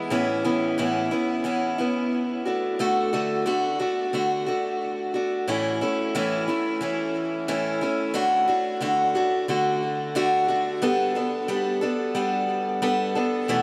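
A bright, boxy parlour steel-string acoustic guitar, picked up front with audible finger squeak and delay, plays alone through this nostalgic rock fragment cut from a longer piece, moving from Aadd9 and D into a second passage at 5.5 seconds that adds Gadd9, all bathed in a huge, dreamy ambient reverb with a 7.4-second tail.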